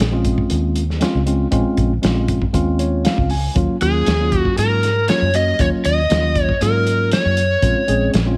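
A lightly reverberant recording carries this brooding, smoky slice of straight-eighth soul blues in Bb minor at 118 BPM, cut from a longer piece. A mellow tine electric piano, a foam-muted fingered bass with a round, dark tone, and a muffled small-room drum kit with a punchy kick play over Bbm7 and Ebm7, with the piano adding a fill at 2.5 seconds. At 3.8 seconds an overdriven slide guitar enters up front with the melody and carries it to 8.1 seconds.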